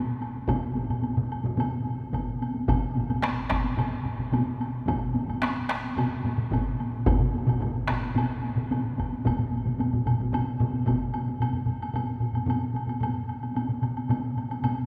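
Heavy-stick taiko drums lead this driving, powerful Japanese traditional ensemble piece at 110 BPM in a straight 4/4, with one up-front group in a live room, a compressed and saturated second group, a third set in the background, and a fourth in a small room, joined by a woody, compressed woodblock, all in a cavernous cathedral-like reverb of a church or concert hall, as one taiko part drops out at 11.0 seconds just before a new section begins at 11.4 seconds in this cut from a longer piece.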